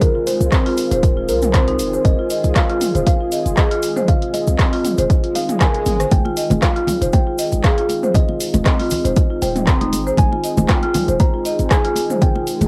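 A swung 4/4 groove drives this earthy afro house excerpt, anchored by a punchy, up-front electronic kick and a layered deep house kit of handclaps, dark hi-hats, rim clicks and toms, both re-recorded in a small room. A grainy, bright egg shaker sits in the background, and close, dry, high-tuned congas with a thick-skinned, hard-handed sound join at 6.1 seconds, just after a faint electronic swell appears in the background at 5.3 seconds. Beneath them, a deep, boomy, sine-based 808-style bass with a noise layer, a fast attack and decaying notes pumps to the sidechain, as does a smooth, detuned sawtooth pad holding dim, chorused chords on Fm7 far back in the mix. Woody marimba arpeggios from medium mallets on rosewood bars carry a vintage, band-limited tone and the same pumping, while a hollow, ringing kalimba plays the melody with soft fingertip plucks through analog delay. Cassette tape colours the kalimba, pad and marimba, and light reverb sits over the whole home cassette recording.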